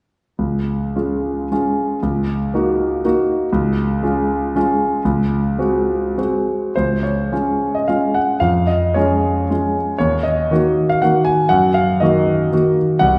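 This classical, romantic dance in triple time has a proud, graceful mood, moving in 3/4 with dotted rhythms and a flexible rubato that lets the tempo range between 94 and 129 BPM. A solo concert grand piano carries the whole piece from 0.4 s to 13.2 s, spanning C2 to Ab5 in D-flat major, tuned to A4 = 442 Hz. The piano sounds warm, intimate and natural, with a deep bass and the clatter of its action audible beneath the notes. The opening phrase circles around D-flat harmonies with touches of E-flat minor and A-flat seventh colour, and a second phrase begins at 6.8 s, moving through D-flat and into E-flat minor. A wet recital hall reverb, with the listener placed further back in the room, gives this short excerpt from a longer work a lingering, spacious glow.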